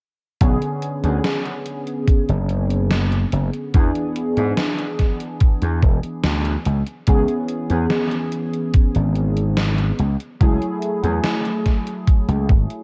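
All four parts enter together at 0.4 seconds in this melancholic, hazy vaporwave fragment at 72 BPM in B dorian: warbling lo-fi synth keys with phaser, analog chorus and tape echo drift over chords moving from Bm69 through E7 and C#m7 to F#m9/C#. A bright, overdriven slap bass with tube saturation sits up front beside a thumpy, sampler-gritty electronic kick, while a quieter gated 80s drum machine adds hi-hat and a gated-reverb snare. The whole carries light reverb and a cassette-tape haze, drawn from a longer piece.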